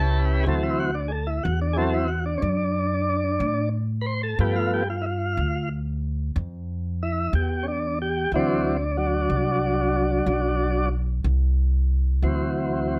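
Slow blues in 12/8 at 61 BPM in D mixolydian, laid-back and gritty, where a smooth, clean tonewheel organ holds sustained chords through a slow rotary speaker with vibrato and carries the solo from 0.5 seconds over a woody, growly pizzicato upright bass, both up front in a moderate studio reverb as the harmony moves from D7 to G7 and back to D7 in this cut from a longer piece.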